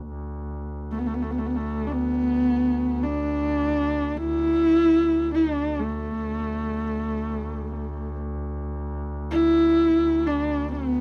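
A rich, husky horsehead fiddle sings an expressive, up-front melody with vibrato and portamento from 0.9 seconds, over a clear, smooth bowed double bass drone held distant on a low D, in a vast and proud Mongolian folk excerpt in free time, captured as a dry, close 1970s-style studio recording with light reverb.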